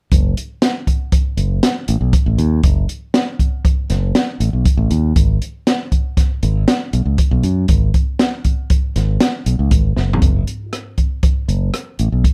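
A dark, lightly reverberant production frames this tense, driving progressive instrumental excerpt for bass and drums, set in 5/4 at 119 BPM with a straight feel in F# dorian. A bright, direct fingered electric bass sits up front, ranging from F#1 to F#2. Beside it, an acoustic jazz kit in a small room has a boomy kick, a high-tuned snare, rim clicks, hi-hat, toms and a rolled-off top, and it plays a fill at 10.0 seconds that leads into a new section.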